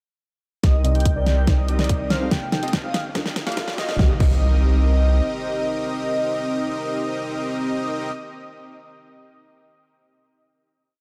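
Future bass in a half-time feel, lush and bittersweet, this short piece opens with a build where a dense, compressed supersaw of detuned sawtooth unison plays syncopated chord stabs under a sweeping low-pass filter, while a hard-clipped electronic kick, a huge layered snare with closed hat rolls and crashes, and a thick, saturated sub bass drive it until the drums stop at 4.3 seconds. On top, a velvety sawtooth lead with chorus, vibrato, 12-bit sampler grit and tape echo repeats a riff melody, an airy, dreamy lead sits in the background doubling the chords in arpeggios, and a soft, round pluck adds very quiet dotted-rhythm chords in a spread voicing. A riser and impact mark the transition into a final held chord from 4.0 seconds, all in a dark production with light reverb and pumping sidechain on the two leads, the supersaw and the bass.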